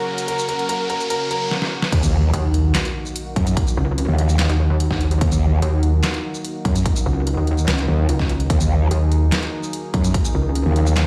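A growling, formant-filtered bass with overdrive and chorus enters at the drop at 1.9 seconds, joined by a heavy, detuned pulsing pluck wobble bass and a punchy, tape-warm electronic kick in this menacing, chaotic excerpt of half-time wobble dubstep at 146 BPM in Eb minor. Before the drop, a clear, worn grand piano with gritty 12-bit sampler texture and tape echo plays a brief melody over a lush, bright unison pad with sidechain pumping and a very quiet, warbling lo-fi pad, while an electronic riser leads through a drum fill into an impact. An overdriven dubstep kit with a deep snare, handclaps, hi-hat, shaker and crash cymbal fills out the drop, and the mix sits in a stone-room reverb, as if played on a big sound system in a bare room.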